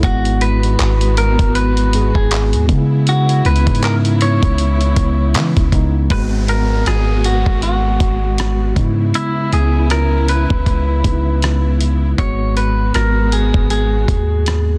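Contemporary R&B with a longing, late-night mood, moving at 79 BPM in 4/4 with a swung sixteenth feel in C# dorian, cycling between G#m7 and C#m7. A deep, sine-like 808-style bass with long decaying notes and a gritty, sampler-style soul drum kit with a thumpy kick, handclaps, hi-hat and rim clicks sit up front, while a mellow tine electric piano plays the accompaniment and a clean, twangy picked electric guitar carries the melody. A lush bowed string section with vibrato holds sustained chords in the background, and an electronic downlifter sweeps through from 6.1 to 12.2 seconds, all in a dry, dense, heavily limited modern mix from a longer piece.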